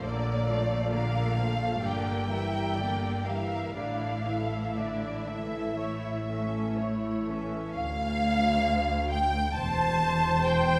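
Classical slow romantic movement for string orchestra in D minor, elegiac and yearning at 58-68 BPM with a rubato 4/4 feel: a lush, up-front violin section carries the expressive vibrato melody over a second, close violin line, while a smooth, even viola section accompanies and a portamento-inflected cello section pairs with a focused double bass section on the bass, all heard from further back in a scoring stage reverb as the harmony moves from Bbmaj7 through Asus4 and A to Dm and C/E in this 10.8-second excerpt cut from a longer piece.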